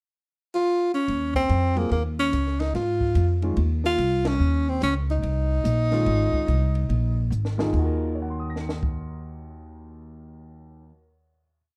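Hypnotic and cool, this short modal jazz piece in Eb dorian swings at 144 BPM, opening with a pickup where a close-miked tenor saxophone with light vibrato states a motif-based melody in period phrases, bathed in plate reverb. Woody pizzicato upright bass walks beneath it from 1.1 seconds alongside a small, dark cocktail drum kit with a high-tuned snare, punchy kick and ride cymbal pattern, while a natural-sounding grand piano adds syncopated comping in quartal voicings over a sustained Eb13sus4. After a band accent at 4.2 seconds and a drum fill, the group settles onto a final Ebm chord, the piano ringing until 11.8 seconds in a warm, dark production with light reverb.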